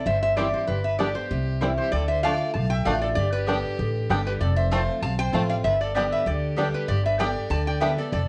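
A metallic, nasal lap resonator guitar carries the melody up front in this rustic, joyful bluegrass excerpt, its slide lines played with fingerpicks. A clear fiddle with light vibrato adds an earthy second line, while a bright, full-bodied dreadnought acoustic guitar picks the accompaniment on fresh strings, with finger squeak audible. A woody, dark upright bass thumps out the low end up front from 0.1 s. From 0.4 s a twangy, percussive banjo plays arpeggios and a picked mandolin adds double-string stabs in the background through an analog delay, both stopping at 7.9 s. The chords move from C and G into D minor, G, F and G in a straight 4/4 feel, and the recording sits in a moderate studio reverb with the worn, warbling pitch drift of old cassette tape.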